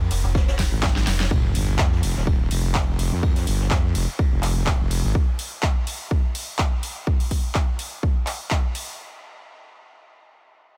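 A saturated, chorused wobble bass anchors this swaggering, gritty bass house at 125 BPM in F minor, driven by an overdriven, punchy electronic kick and a big-room dance kit with a huge snare, handclaps and metallic hats, while a brushed jazz kit with dark cymbals sits in the background until 5.1 s; in the opening 1.3 s a digital, decaying FM bass and a deep, moody, very quiet pad hold an F minor chord under a drum fill, and an electronic sub drop arrives just after the impact, at 1.4 s.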